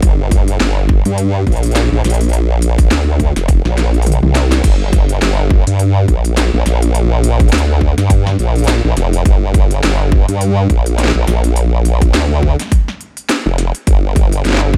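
Set in a digital ambience, this swaggering, funky glitch hop passage in G minor moves at 104 BPM with a swung 16th-note feel and is cut from a longer piece. A detuned, compressed formant-sweep wobble bass sits up front with chorus and tube saturation, its sawtooth-and-sine tone wobbling through a formant filter, while a tight, tape-warm electronic kick drum punches alongside it. A layered drum and bass kit adds a cracking snare, crisp hats, crash cymbal and toms in studio reverb, with a drum fill from 3.8 to 4.6 seconds.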